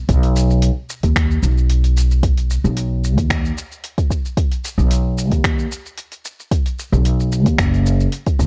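A woody, growly pizzicato upright bass with sidechain pumping opens this earthy organic downtempo groove in B major at 112 BPM with a light 16th-note swing, joined at 0.1 s by a deep, up-front electronic kick and a gritty, tape-warm sampler-style soul kit of finger snaps, hi-hat and shaker, all set in a dark digital ambience in a short fragment cut from a longer piece.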